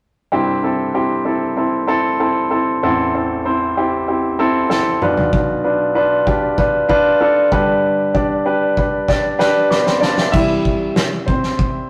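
Driving and earnest, this straight 4/4 piano-driven pop fragment at 96 BPM, cut from a longer piece, opens on a clear, polished baby grand piano playing accompaniment over C, Am, Bdim and G. At 4.7 seconds a loose indie drum kit enters with a fill, bringing a fat snare, tight kick, toms and crash cymbal that sound roomy, with another fill before the piano takes a short solo at 10.3 seconds as the harmony returns to C. The sound is a rough rehearsal-room recording with saturation and a wet stone-room reverb.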